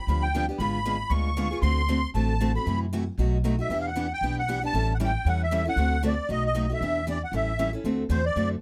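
A musette accordion opens at 0.0 seconds with a reedy, shimmering melody in its characteristic musette tuning, joined almost at once by picked steel-string acoustic guitar and upright bass. This is a brisk, playful slice of acoustic string swing in the jazz manouche style, moving at 232 BPM in 4/4 with a swung eighth-note feel and a charming, light-hearted mood in D mixolydian. The guitar, bright and parlour-toned, supplies the accompaniment through a cycle of seventh chords, diminished passing harmony and a turnaround that lands back on D7. Beneath it, the pizzicato upright bass on gut strings sounds woody, dark and thumpy, sitting up front in the mix. All three instruments are captured with close, detailed microphones and a touch of light reverb, giving the brief cut from a longer piece an intimate, present sound that runs to about 8.6 seconds.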